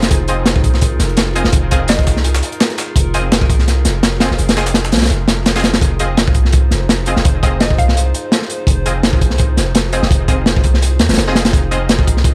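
A crunchy, saturated breakbeat kit drives this raw, atmospheric drum and bass and jungle cut at 168 BPM with a lightly swung 16th feel, while a pitched-up, compressed sampler-style kit with high-passed hats and snare sits in the background until 5.7 seconds. A deep, sine-like 808-style bass holds long notes under a warbly, detuned tape-like pad sustaining an Fm7 chord in F minor, its chorus and reverb lending a nostalgic lo-fi haze. Bold, bright orchestra-hit-like stabs with reverb and dub echo punctuate the passage, a woody FM mallet pluck with chorus and dub echo appears briefly near 1.9 and 7.6 seconds, and vinyl crackle and small room ambience coat the excerpt.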